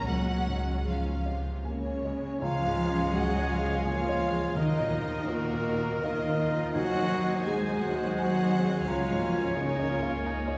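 Cinematic, emotional film score for orchestra in a rubato 3/4, longing and sorrowful, cut from a longer piece, where a rich violin section carries the melody over a second violin line, a felt-muted upright piano, a viola section, a dark double bass section and a cello section whose bowed lines slide with expressive portamento, then a hollow flute and a mellow French horn section holding sustained chords join at 1.6 seconds, and a bright clarinet and clear oboe add solo lines at 2.4 seconds, all set back in a wet concert hall.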